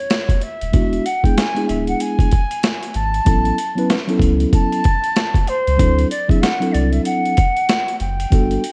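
Mellow and cool, this swung jazz-hop excerpt is led by a pure, straight-toned silver concert flute that solos from 0.0 seconds with a crisp attack and expressive phrasing. A gritty, compressed, pitched-down boom bap drum kit with a thumpy kick and high-tuned snare enters at 0.1 seconds, while a deep, round sine sub bass and a mellow tine electric piano heard through its built-in speakers join by 0.7 seconds to outline E7, A69 and D7. Light reverb and a worn cassette-tape warble with drifting pitch give the whole recording an aged, wavering patina.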